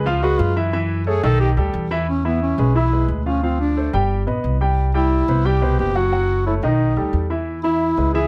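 A polished grand piano and woody pizzicato upright bass open this sunny, sophisticated Afro-Cuban jazz excerpt at 178 BPM in straight 4/4, joined at 0.1 s by a mellow, close-miked duduk whose folk-style solo of scooped notes, bathed in plate reverb, sits up front alongside the present piano and bass in a lightly reverberant room, over changes that run from C#7 and F#m7 through B7alt, E6 and Cmaj7#11 to a final E.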